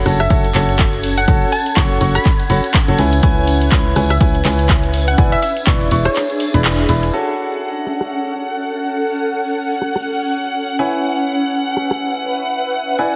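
A clear, intimate baby grand piano riff with audible action noise, 12-bit sampler grit, tape echo and sidechain pumping drives this soulful, energetic piano house cut in F# minor at 123 BPM with a 16th-note swing, moving through F#m, C#m7 and E7 over a punchy, round FM bass, a hollow, bouncy detuned square pluck melody with lush chorus and tape echo, shimmering sawtooth string-machine violins, a cloudy, evolving granular pad, a dry analog drum machine with filtered cabasa, handclaps, hi-hat and rim click, a distant tambourine and a dry electronic kick that plays until 5.8 s, while the bass and tambourine stop at 7.1 s as the second section begins, all under a lush hall reverb and a heavily compressed radio sound.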